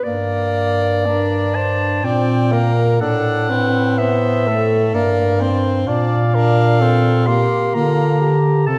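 In a rubato 3/4 at around 63 BPM, this solemn, yearning classical piece for single-reed quartet unfolds in G minor, moving from Gm through F#dim/A back to Gm and on to Bb in a passage cut from a longer work. A warm clarinet carries the melody while a clear alto saxophone sings a second line, a punchy tenor saxophone sits up front with the accompaniment, and a bass clarinet with a soft attack and smooth top anchors the bass, also up front. The quartet plays together through the full 8.8 seconds, bathed in the wet reverb of a recital hall.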